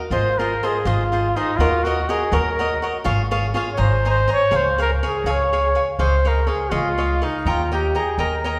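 Proud and festive, this mariachi excerpt in Db major moves at 82 BPM in a straight 6/8, with a warm, classical-style solo trumpet carrying the melody up front. A crisp, picked acoustic cavaquinho starts the accompaniment at 0.0 seconds, and a woody pizzicato upright bass with steel strings enters alongside the trumpet at 0.1 seconds. Chords such as Ebm7, Abadd9 and Eb7 pass beneath, and the whole group sounds as if heard from further back in a wet recital hall.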